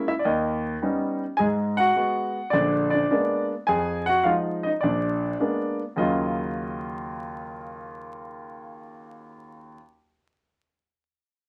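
A warm, present grand piano carries this polished, up-front solo jazz excerpt, swinging through a late-night minor-key progression of altered dominants and rich minor sevenths, set in a moderate studio reverb with a layer of vinyl crackle, and playing alone from 0.0 to 9.8 seconds.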